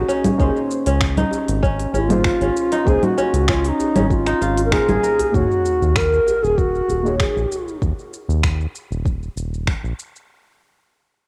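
Lightly reverberant and cassette-softened, this earthy, meditative organic downtempo fragment, cut from a longer piece, sets a breathy, up-front bass bansuri melody over ringing, fingerpicked kora arpeggios, a detuned chord stab tucked in the background with chorus, phaser and sidechain pumping, a round analog bass that also pumps, an overdriven electronic kick, an organic electronic kit of congas, finger snaps, crisp hats and shaker, a distant, very quiet djembe, and a faint sub drop marking the impact at 5.3 seconds.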